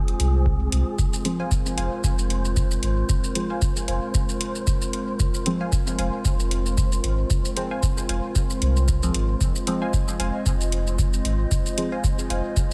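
A moody analog pad, a round sine sub bass and an airy, breathy wind-like noise texture with its own reverb open this nocturnal, meditative slice of dub techno in F minor, all three pumping against the sidechain while metallic hats and shaker arrive almost at once and a deep kick, re-recorded in a large room, lands at 0.5 seconds. From 1.2 seconds a soft, warbling vintage chord stab with chorus, phaser and dub echo joins, followed at 1.4 seconds by a crisp, detuned wavetable stab with a filter pluck and moving notch that also trails dub echo. The groove sits at 114 BPM with a light swing on a single sustained Fm chord, and the mix stays fairly dry overall in this excerpt cut from a longer piece.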